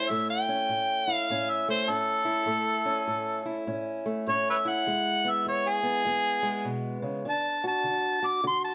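A swung 4/4 feel carries this rollicking, soulful acoustic country blues excerpt, where a clear, up-front harmonica takes a jazz-styled solo full of vibrato, tongue slaps and scooped notes over a boxy, fresh-stringed fingerpicked parlour guitar, with light reverb and chords moving from A to E at 4.9 seconds and D at 7.3 seconds.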